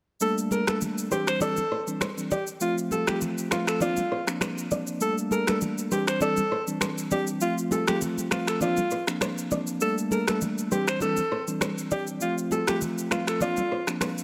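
Breezy and romantic, this afrobeats excerpt moves at 100 BPM in 4/4 with a gentle sixteenth-note swing, sitting in F major as the chords cycle through Gmadd9, Cadd9, F and Bbadd9. A breathy alto saxophone carries the melody up front from 0.2 seconds, smooth on top with light vibrato and a pop-style solo voice, its lines touched by delay. Beneath it, a mellow tine electric piano plays clean, direct accompaniment, while electronic shaker, rim click and finger snaps give the drums a produced, tape-warm character. From 0.5 seconds a small, dark nylon-string guitar adds a fingerpicked riff with its own delay, and damped, thick-skinned congas sit close and dry in the background. Light reverb gives the mix a soft sense of space, and the whole passage holds a single section that feels cut from a longer piece.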